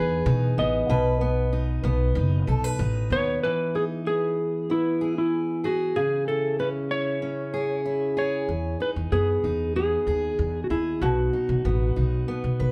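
A straight 4/4 pulse at 95 BPM carries this carefree, sunny acoustic pop fragment in E major, where a dark, clean lap steel guitar sings the slide melody over a full-bodied fingerpicked dreadnought acoustic guitar with audible finger squeak, while a woody, growly pizzicato upright bass plays until 3.4 seconds and returns at 8.5 seconds, all captured as a live band in one room with a moderate large studio reverb.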